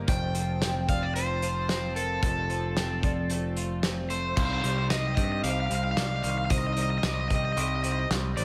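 A straight 4/4 pulse at 112 BPM from a loose indie drum kit with a fat snare, tight kick and dark cymbals drives this melancholic, cinematic post-rock excerpt, where a growling overdriven bass and a crunchy lead guitar with digital delay sit up front over a twangy twelve-string guitar in lush chorus and slapback echo, a mellow, clean, fingered electric guitar in the background, and a very quiet swirling, detuned phased analog pad, as the harmony shifts from F to C minor at 4.4 seconds.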